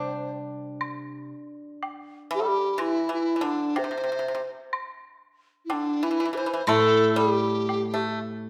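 Loose, rubato phrasing over uneven beats in 2/4 gives this graceful, pastoral fragment of a Chinese chamber ensemble piece a gently unhurried feel, with a close woodblock marking time from 0.8 seconds. A large dizi carries the melody up front, its hollow, buzzing bamboo tone shaded with vibrato and tongued notes, while a dry, percussive pipa plucked with fingerpicks traces a lower second line beneath it. A silvery steel-string zither rings out in accompaniment at the opening and returns at 6.7 seconds, all set in a wet recital-hall reverb.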